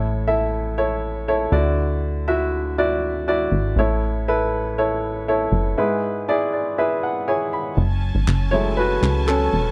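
Piano-driven pop in A major at 120 BPM in a straight 4/4, opening with a woody upright piano and a punchy, plucky analog bass together from the start, both sitting up front in a small room with light reverb. The mood is anthemic and uplifting, with the piano carrying the accompaniment over a progression that moves from A to Dadd9, back to A, then to E/G# before turning to F#madd9. The piano plays a fill from 6.3 seconds, and at 7.8 seconds it steps forward into a solo as the harmony shifts. At that same moment a lush, bowed string section enters quietly with sustained chords, smooth and rich with vibrato. Crisp, human-sounding group handclaps join briefly at 8.3 seconds, adding a close, acoustic accent before this cut from a longer piece ends.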